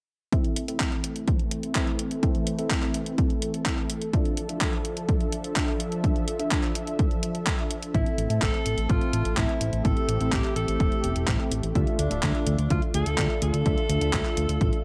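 Italo disco with a melodramatic, danceable pull, this excerpt moves in a straight four-four over a cycle of Am and Dmadd9. A detuned sawtooth pad holds smooth, slow-blooming chords with chorus, while a glossy, retro polysynth sits in the background with pulse-wave stabs, a filter sweep, cassette-tape grain and tape echo. The drums pair a punchy, overdriven kick, layered and up front with the air of a large room, with a gated 80s drum machine whose handclaps and hi-hat carry gated reverb and a tape-softened, sampler-style edge. At 7.9 seconds a fat, detuned bass enters up front, thick and saturated with a wave-folded bite and its own filter sweep. At the same moment an alto saxophone takes the solo melody, distant and roomy with vibrato and tape echo, adding a pop-style sheen over a light overall reverb.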